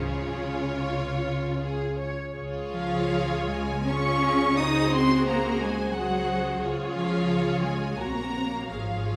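The cello section stands out with an expressive, lush bowed bass line marked by portamento and vibrato, paired with a close, smooth double bass section, in this tender, serene excerpt of a slow romantic movement for string orchestra in Db major, in 3/4 with a rubato pulse of 73-91 BPM. Above them, a distant, rich violin section carries the melody, a close, warm second violin line reaches up to Eb6, and focused violas fill in the accompaniment, as the harmony moves from Db to Ab7/Db at 4.6 s and on to Gb/Bb at 8.0 s. A recital hall reverb of about 1.4 s gives the ensemble a spacious, church-like glow.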